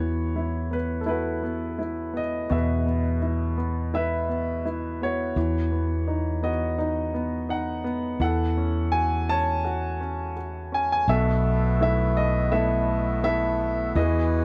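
An intimate, woody upright piano carries the melody up front, its audible action noise adding closeness to this nostalgic, heartfelt acoustic folk-pop ballad at 84 BPM in 4/4, with a dark, round fretless electric bass beneath it on an Esus2 chord until a reedy, breathing hand-pumped harmonium enters with sustained chords at 11.1 s as the harmony shifts to B7sus4, all in light reverb within this short cut from a longer piece.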